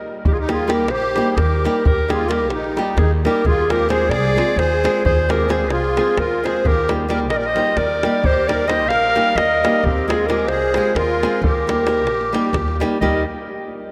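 Balkan folk in the manner of a wedding band, this brief excerpt from a longer piece sounds festive and exuberant, moving briskly at 263 BPM counted in eighths in a straight 7/8 in Eb major. A mellow clarinet with a smooth top carries the melody up front in a classical style, sitting between G4 and F5, while a reedy musette accordion adds a shimmering, airy second line beneath it. An upright bass plucked on gut strings gives a woody, dark, thumpy foundation, and a tight, close and dry davul keeps the percussion in the background. A small, boxy nylon-string guitar, fingerpicked, joins at 0.5 seconds just after the others begin at 0.3 seconds. The harmony alternates between Eb and Fm, and the whole band rings out in a vast, echoing cathedral-like space with a long reverb tail.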